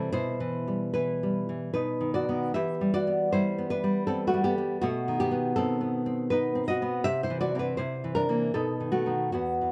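A dark recording places the listener in a moderate recital hall, its 1.4-second reverb trailing behind a classical nylon-string guitar that sits up front in the mix. This romantic solo piece in E minor moves in 3/4 at a rubato 73-82 BPM, with a passionate yet intimate mood. The fingerpicked guitar has a woody, warm tone coloured by old strings, and it ranges from E2 up to E5 across the 9.7-second passage, which is cut from a longer piece. The harmony opens on E minor over B, then passes through B, E minor and a tense B7b9 near 4.8 seconds. Toward the close it shifts through C and C7 before arriving on B7 at 8.5 seconds.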